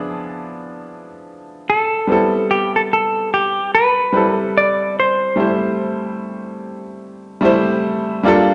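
A late-night, smooth R&B fragment in A minor at 73 BPM, with swung 16ths and a clean, compressed semi-hollow electric guitar carrying the fingered melody up front until 8.2 s. A clear baby grand piano with short sustain accompanies close by until 8.5 s, moving from E7b9 to Am9 at 2.1 s. Both sit in a wet recital-hall reverb with a 1.3-second tail, and the top end rolls off above 10.8 kHz.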